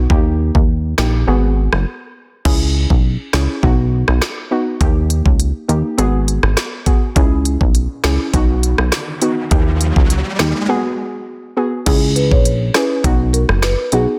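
Dancehall with a tough, sultry mood, cut from a longer piece, built on an up-front, punchy analog bass with a nasal, funky filter pluck, an electronic island pop drum kit with a knocking kick, woody snare and smooth hats, and a soft, dark, detuned pluck with chorus carrying the accompaniment. An electronic riser builds from 8.7 seconds ahead of a break, and at 11.9 seconds a marimba played with medium mallets enters with a short melody, its padauk bars sounding woody and warm through a delay. The digital ambience and dense, heavily limited modern master keep everything loud.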